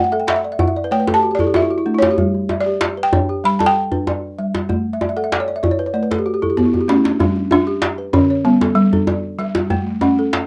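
Hypnotic and warm, this short slice of West African string and xylophone music sits in a straight 4/4 groove and is cut from a longer piece. A lead balafon carries the melody up front, its round, woody tone struck with soft rubber mallets and captured close-miked for a full sound, and it plays a solo with fills through the opening stretch until 7.2 seconds. Beneath it, a second balafon spins out arpeggios in a lower range, dry and buzzing under its rubber mallets. A djembe joins at 0.3 seconds with a tight, cracking, band-limited tone that feels vintage, and it adds a fill from 6.4 seconds just before the music moves into a new section. The harmony settles between A5 and G before landing on A, all set in a modest small-room ambience with a rough, home-demo character.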